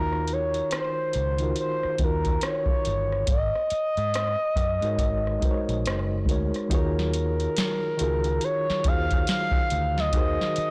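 R&B and neo-soul at a slow 70 BPM with a swung 16th feel in Eb dorian, this introspective late-night fragment pairs a smooth, gliding portamento lead with chorus and tape echo over a reedy electric piano shimmering with fast tremolo, a dark, round, foam-muted fingered bass with transformer saturation, and an up-front analog rhythm box of deep kick, rim click, metallic hats and a crisp, softly clipped snare, all captured dry in a blown-out, overdriven recording as the chords move from Ebm69 through Ab9sus4 to Ebm11 at 6.7 seconds.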